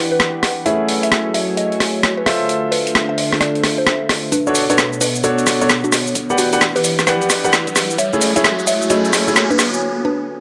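A dry, gritty hardware recording with light digital ambience carries this late-night, skippy excerpt of two-step UK garage in B minor at 131 BPM, swung on the sixteenths, where an up-front, compressed breakbeat kit of hi-hat, rim click and cabasa drives over an airy, breathy pad and a dark, warbling tape-like pad, both chorused and pumping to the sidechain. A clear baby grand piano with audible action noise plays stabs while a woody, round mallet-like FM pluck carries the melody through phaser and tape echo, over chords moving from Em7 and F#m7 to Dm7 and Bm7. At 4.3 seconds a knocking electronic kick joins in the background for a build-up, an electronic riser climbs in from 6.2 seconds, and a short break arrives at 9.8 seconds.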